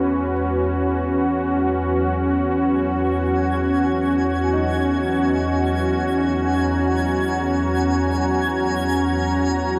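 The warm analog pad stands out most, sitting up front with smooth, detuned sawtooth chords that bloom from a soft attack and hang on a long release, their brilliant sheen lifted by chorus across a span from E2 to A#5. This is weightless, luminous ambient music in free time and E lydian, resting on a single Emaj9#11 chord for the whole 9.8-second excerpt, which is cut from a longer piece. Beneath the pad, a felt-muted upright piano plays very quiet arpeggios from E3 to G#5, its tone mellow and intimate with a thin felt softness. At 2.8 seconds a twinkling granular texture enters on G#5, a sparkling FM shimmer an octave up that fades in slowly, sustains and carries its own built-in reverb. The whole mix is soaked in a cathedral reverb with a 5.5-second decay, giving the piece a dreamy, floating space.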